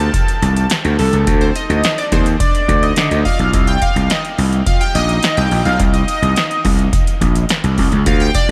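A glossy, chorused polysynth with phaser plays a solo from the start over a growly, overdriven slap bass and an analog drum machine with deep kick, punchy snare and metallic hats, setting a slick, danceable early-eighties boogie funk groove at 106 BPM in C dorian as the harmony moves from D5 to Cm7 at 3.5 seconds, the mix soaked in a huge, dreamy reverb in this short cut from a longer piece.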